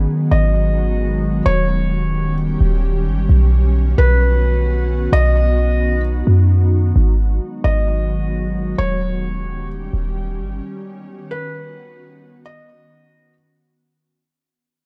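A deep, boomy 808-style bass sits up front with a clean, sine-like tone, its fast attack decaying under the chords until it stops at 10.6 seconds. This is an excerpt of atmospheric cloud-rap at 131 BPM in 4/4 with a half-time feel, tuned slightly low and carrying an ethereal, melancholic mood. An airy, detuned pad holds sustained chords throughout, its slow attack and long release softened further by ensemble chorus and its own built-in reverb. Entering at 0.3 seconds, a felt-muted upright piano carries a narrow, intimate melody with audible action noise, echoed by a digital delay. The harmony cycles through G#m7, D#7 and Badd9, and the dark, dry production fades out from 7.0 seconds onward.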